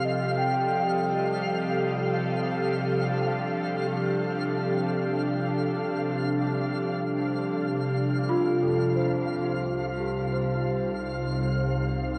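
An up-front, breathy pad holds soft sustained chords in free time through this serene, reflective ambient excerpt, while a delicate, bell-like celesta with tape echo ripples arpeggios above, a warbling analog drone hums in the background, a twinkling granular texture sparkles high, and at 9.4 s a filter sweep moves across the synth pad as a rich, bowed double bass section enters low, all bathed in long shimmer reverb and the worn pitch drift of old cassette tape.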